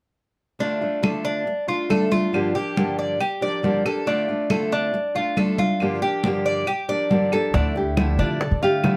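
Cuban son in the guajira style, this nostalgic, warm excerpt in D minor moves at 138 BPM over a Dm to Gm7 sway, opening at 0.6 seconds with an up-front fingerpicked steel-string acoustic guitar (finger squeak audible), metallic double-strung Cuban tres arpeggios and thick-skinned vintage congas, joined at 1.0 seconds by woody claves ticking in the background. A nylon-string guitar with old strings enters with a short classical melody at 7.3 seconds. At 7.5 seconds the harmony shifts to Dmadd9 as a dark, growly pizzicato upright bass and round, close, dry bongos arrive, all set in a light reverb.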